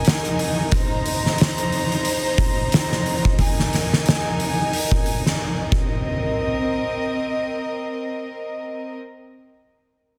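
Trip hop with a dark, cinematic mood, this short excerpt from a longer piece moves in a lightly swung four-beat groove. An oversized, low-tuned acoustic drum kit of kick, snare and hi-hat sits up front, with a punchy kick, a fat snare and a bright stone room that pumps around the hits. A rich chamber string ensemble holds sustained, bowed chords throughout, earthy in tone with light vibrato. The harmony rocks between Bb7sus4 and Cm7, and the drums drop away at 5.9 seconds, leaving the strings alone through the close at 9.0 seconds. Light studio reverb and a dense, heavily limited modern master give the sound a heavy, compressed weight.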